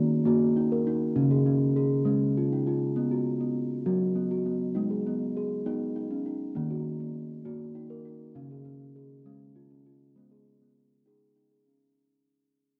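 This hypnotic, meditative world piece moves at 67 BPM in a straight 6/8, in G# dorian with tuning a touch below concert pitch. A lone steel tongue drum, struck with firm rubber mallets, plays round, ringing arpeggios between C#3 and A#4 over a gentle cycle of D#m, C#, B5 and G#m. It sits close and up front within a small, reverberant home room, and the cassette recording softens its upper edge while the whole 12-second passage, cut from a longer piece, fades out.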